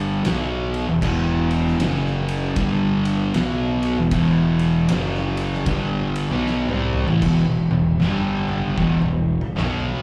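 A double-tracked fuzz guitar sits up front with a warm, distorted riff and slapback echo, alongside a round, overdriven fingered bass and, from 0.2 s, an oversized low-tuned drum kit with a fat snare, punchy kick and dark cymbals, in a brooding, heavy stoner and doom metal excerpt at 77 BPM with a swung feel in E dorian, heard live through a club PA with light reverb, where a drum fill at 6.4 s leads into a new section at 7.2 s.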